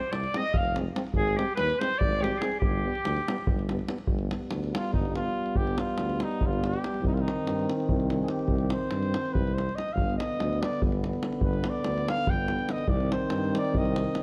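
A dark trumpet with vibrato and a soft attack carries the melody up front throughout this fiery, bittersweet excerpt of Balkan brass band music, and from 4.1 seconds it takes a solo that runs to the end. It moves in a brisk 7/8 at 287 BPM counted in eighths, with a straight feel in G phrygian dominant, over chords that shift from Fm through Ab and G to Cm. A bright, vintage-toned clarinet adds a second line only in the opening seconds, stopping at 3.6 seconds. Beneath them a present tuba holds the bass and a deep, acoustic davul drives the percussion up front. A mellow, smooth-topped trombone and a clear, punchy euphonium fill in the accompaniment from the background. Close, detailed microphones and light reverb give the band an intimate, lively sound.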